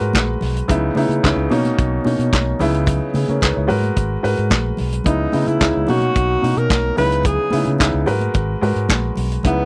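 A sultry, driving disco groove at 110 BPM in C# dorian opens at 0.0 seconds with an up-front baby grand piano playing short-sustained ninth chords, a dark, round fingered electric bass, and a tight soul drum kit with handclaps, hi-hat, kick and snare, while soft-handed, high-tuned congas join in the background at 0.1 seconds. At 5.1 seconds a breathy alto saxophone takes the solo melody up front, its jazz-style subtone colored by vibrato and scooped notes. The dry, close 1970s-style studio sound carries light reverb, and this excerpt is cut from a longer piece.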